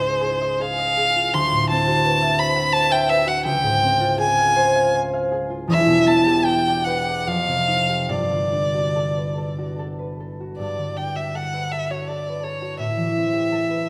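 Swaying in a flexible triple metre with generous rubato, this dreamy, luminous fragment from a longer impressionist classical duo pairs violin and concert harp, tuned to A4 = 443 Hz. A single bowed violin carries the melody up front from start to finish, its tone rich and focused with singing vibrato and a smooth top. Beneath it, the concert harp supplies accompaniment across a deep span, its thumb-plucked strings sounding acoustic, warm and ringing, also placed close. Lush extended harmonies drift from C#maj9 through D13, C#maj7#11, Em7, F9 and Gmaj9 before settling on Am9. A new section opens at 10.6 s, and a wet concert hall reverb with a 1.9 s decay bathes the pair in a soft, glowing space.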